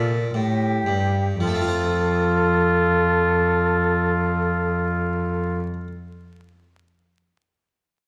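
Wrapped in a wet scoring-stage reverb with vinyl crackle, this short fragment of a serene, flowing baroque-style sonata movement in F major moves at 56 BPM and slows over its first 1.4 seconds. An airy, expressive concert flute with vibrato carries the melody beside a roomy oboe second line, while a plucked French-style harpsichord on two sets of strings accompanies and a close, gut-string cello, bowed by one player, anchors the bass up front.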